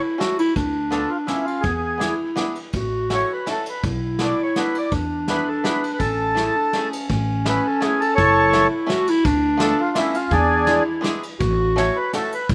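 A reedy, full-bodied accordion carries the melody from 0.9 seconds, close-miked, dry and up front, with a slapback echo trailing its rich tone in this whirling, nostalgic musette waltz in swung three-time. Beneath it, a mellow clarinet plays a second line in a distant, roomy classical style, also touched by slapback echo. A twangy bluegrass banjo played with fingerpicks supplies percussive acoustic accompaniment with its own slapback, while a woody pizzicato upright bass with steel strings enters at 0.6 seconds. A soft brush drum kit, heard from a roomy distance, adds a punchy kick, a medium-tuned snare and ride cymbal. The harmony moves through sevenths and sixth chords such as F#m7, Dm6, E7 and A6 across two matching sections in a dry mix cut from a longer piece.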